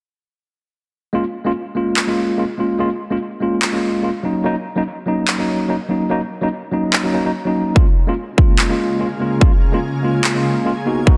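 A punchy, overdriven electronic kick sits up front in this lush, euphoric future bass excerpt, landing at 7.8 seconds under a half-time, lightly swung groove. Before it, a worn, slightly out-of-tune tine electric piano carries the chords from 1.1 seconds, gritty and boxy as if heard through built-in speakers, pumping against the beat with dub echo, while produced electronic handclaps join at 2.0 seconds. Near the close a shimmering, ethereal pad fades in with a slow attack, detuned and granular with chorus and an octave-up sparkle, over a dense, heavily limited master with light digital ambience.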